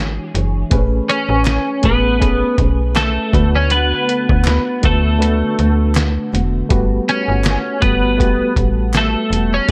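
Dreamy and hazy, this indie and bedroom pop excerpt in A major moves at an unhurried 80 BPM in 4/4 with a light swing on the sixteenths. A dark, full-bodied nylon-string guitar, thumb-plucked with audible finger squeak, drifts in pitch under an ensemble chorus, while a reedy electric piano shimmers with fast tremolo; both sit softly in the background. Up front, a snappy FM bass with a metallic attack anchors the low end, joined at 0.4 seconds by a muffled, compressed, pitched-down sampler-style drum kit with a thumpy kick, medium-tuned snare and hi-hat. At 1.1 seconds a bright, twangy twelve-string electric guitar takes the melody, its picked tone colored by ensemble chorus and digital delay, and faint, hollow, vintage-sounding group handclaps enter at 1.4 seconds. The harmony opens on E13 before settling into Amaj9, then D6 and Gmaj9, all bathed in a light reverb.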